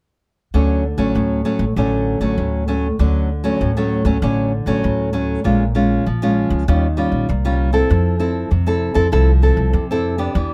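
A fingerpicked nylon-string guitar sits up front in this festive, lively samba and choro excerpt, its full-bodied classical tone carrying a finger squeak as it plays accompaniment from 0.5 to 10.5 seconds. An upright bass plays pizzicato underneath for the same span, with a woody, thumpy sound from its steel strings. The tempo is a moderate 98 BPM in a straight 4/4. The harmony opens on Dmaj7, and after a shift in the music at 3.0 seconds it moves through Bbm7, Eb9 and Fmaj7. Close, detailed microphones and a light reverb give the pair an intimate, acoustic presence.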